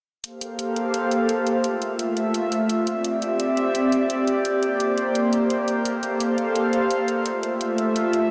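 Soaked in a huge ambient reverb with an 8.3-second decay, this dreamy liquid drum and bass fragment in G dorian rolls along at 171 BPM in 4/4 with a light 16th-note swing. An airy, breathy pad with chorus sits up front from 0.4 seconds, holding mellow, full-bodied sustained chords that move through Gm11, Fmaj7, D9sus4 and Bb69 before returning to Gm11 and Fmaj7. Underneath, bright, overdriven electronic hi-hats sit low in the mix from 0.2 to 8.2 seconds.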